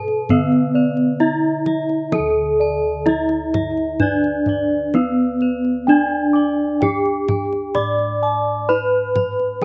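Shimmering and serene, this short cut from a longer Javanese gamelan piece moves at 64 BPM in D pelog barang, with a dark, smooth bronze metallophone carrying the melody up front with slapback echo, a bright second metallophone and a set of mellow bossed gongs adding arpeggios with the same echo, deeper padded bossed gongs holding the bass, and a close, deep kendang joining at 0.1 seconds, all heard dry in the open air.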